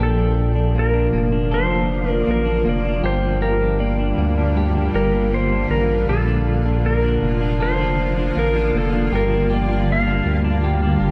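Blissful and ethereal, this dream pop excerpt drifts at 79 BPM in Bb major, alternating Bbmaj7 and Gm7 as a clean lap steel guitar, played with fingerpicks and slide, sings a melody through tape echo with volume swells. Beneath it, a clean electric guitar spins arpeggios through lush chorus and tape echo, while a granular cloud pad holds blurred, detuned, evolving chords and a thick, saturated sub bass sits up front. A moderate lush hall reverb lends the whole excerpt a dreamy digital ambience.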